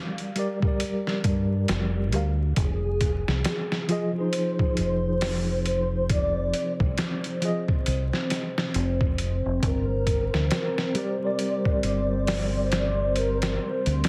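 A round, up-front dub bass anchors this brooding, cinematic trip hop excerpt, entering at 1.2 seconds in F dorian at a slow 68 BPM in 4/4 with a 16th-note swing. Beneath it, a gritty, pitched-down sampler-style drum kit pairs a thumpy kick and a medium-tuned snare with hi-hat, its sound re-recorded in a large room. A mellow tine electric piano carries the accompaniment through tremolo and tape echo. At 2.6 seconds a pure, breathy sine lead arrives, gliding and warbling with vibrato, ensemble chorus and tape echo, as the harmony moves from Gm to Fm7 and later back to Gm. A moody, detuned sawtooth pad with a slow attack and a sub octave swells in at 3.8 seconds, coloured by chorus and phaser, and the whole mix has a heavily compressed radio sound with vinyl crackle and light reverb.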